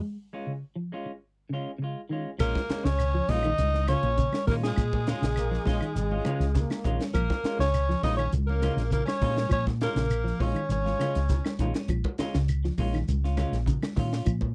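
A breathy alto saxophone carries the melody up front in this funky, defiant afrobeat excerpt in Bb minor at 101 BPM, shadowed by a gritty tenor saxophone line, after a 2.4-second break in which a twangy clean electric guitar plays arpeggios with ensemble chorus over Bbm7 and a semi-hollow electric guitar adds picked stabs, while a round, punchy hollow-body bass, a tight funk drum kit with bright cymbals and a high-tuned snare, woody claves, grainy shekere and ringing congas drive the groove, and a clear trombone section briefly joins at 5.4 seconds, heard in a dry, close 1970s-style studio sound with faint mains hum.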